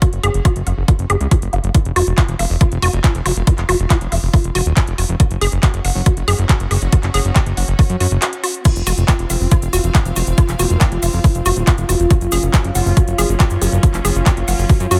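Set in a digital ambience, this hypnotic, driving psychedelic trance cut opens with a punchy electronic kick placed up front, re-recorded in a small room. Around it sit a tape-toned drum kit with metallic hi-hats, handclaps and crash cymbal, and a fat, detuned sawtooth analog bass with an evolving filter sweep. A woody, wave-folded pluck carries the riff with chorus, delay and sidechain pumping, while a lush, bowed symphonic string section fades in gently behind it, its vibrato clear and its level pumping. During a short break from 8.2 seconds, a grainy acoustic cabasa joins in the background, and a bubbling, resonant texture enters at 8.7 seconds with random filter steps, reverb and vintage 12-bit sampler grit. From 9.3 seconds a very quiet, nasal vowel-sweep wobble bass adds a dark, saturated second line before dropping out.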